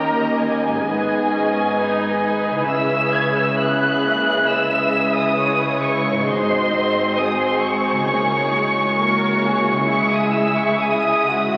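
Yearning and elegiac, this slow romantic orchestral excerpt in a rubato 4/4 sets a lush, vibrato-rich upper violin melody up front over a focused second violin line, a distant viola section, background cello and double bass sections, mellow French horn chords and ringing fingerpicked harp arpeggios, with a very quiet, dry timpani touch at 6.3 seconds, all bathed in concert hall reverb and the crackle of a very old 78 rpm record.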